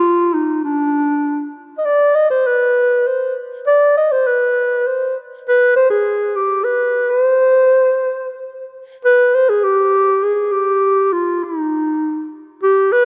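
A breathy clarinet carries this short klezmer fragment entirely on its own, its dark, vibrato-laden tone sitting up front and shaded with a jazz-inflected phrasing. The mood is at once festive and soulful, moving in a straight three-beat lilt drawn from a harmonic minor scale that gives the line its characteristic yearning color. The melody stays within a modest middle register, from D4 up to Eb5, and a phrase heard in the opening nine seconds returns from 9.0 seconds until the cut at 13.1 seconds. A lush hall reverb gives the solo voice a spacious tail, while the cassette-tape character lends it a homespun, slightly worn grain. Cut from a longer piece, it feels like an intimate glimpse of a celebratory tune played at home.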